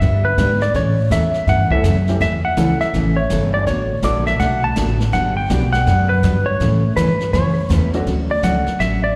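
A brisk swing at 164 BPM in 4/4 drives this playful western swing excerpt in D major, a short slice of a longer country tune caught live through a venue's PA with a light recital-hall reverb. Out front, a dark, clean electric lap steel played with fingerpicks and a slide carries the melody between B4 and A5, compressed and touched with slapback echo. Beneath it, a woody, thumpy upright bass on gut strings sits up front with dark pizzicato tones, while a bright, full-bodied jumbo acoustic guitar picks out the accompaniment, finger squeak and all. A jazz kit played with brushes keeps the swing moving on brushed snare, hi-hat, a boomy kick and a medium-tuned snare, sounding natural in a small room. At 1.7 seconds a brilliant upright piano with short sustain joins the accompaniment, and the harmony moves from G and A through D/A and Gmaj7, back to A, before settling on Dmaj7 at 8.1 seconds as a new section begins.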